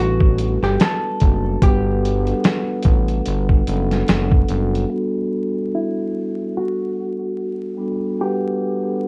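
Dark, crackling vinyl haze and light reverb frame this dreamy, cosy lo-fi hip hop excerpt in G major at a swung 73 BPM, where a clean, hollow-body jazz guitar picks a dusky melody over mellow, ringing soft-mallet vibraphone on Gmaj9 with cassette tape colour, a thick detuned sawtooth analog bass, and a gritty 12-bit sampler drum kit of finger snaps, hi-hat, thumpy kick and fat snare entering at 0.2 seconds, until bass and drums drop out at 4.9 seconds and a filter sweep carries the guitar and vibraphone onward alone.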